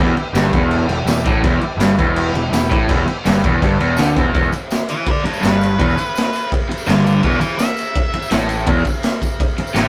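This swaggering, raw garage rock excerpt sits on a straight, driving pulse over a single E minor chord, with a rough rehearsal-room sound, tube saturation and light reverb. A crunchy, double-tracked rhythm guitar plays a low riff up front, supported underneath by a punchy, fuzzed-out picked electric bass, while a raw drum kit with a boomy kick, medium-tuned snare, crash and ride pumps in a small room with a gritty, rolled-off top. A jingly tambourine rattles close and dry in the background. For the first 4.3 seconds a buzzy vintage combo organ holds sustained chords with light vibrato behind the band, adding short fills before dropping out. At 4.9 seconds a dark octave-fuzz lead guitar takes a solo in the upper register, its distorted picked line trailed by digital delay.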